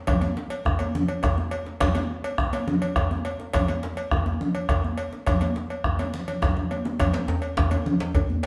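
West African traditional drum ensemble music with a driving, earthy 12/8 feel, played live in a stone room whose reverb lends a natural ring. The deep, dark bombo sits up front beside bright, high-tuned congas struck with hard hands, while a metallic cowbell cuts through close and dry and a soft-handed, compressed, saturated djembe rumbles in the background. After a drum fill at 6.3 seconds, a second, up-front djembe with a warm, deep tone joins at 7.1 seconds, just before this cut from a longer piece ends.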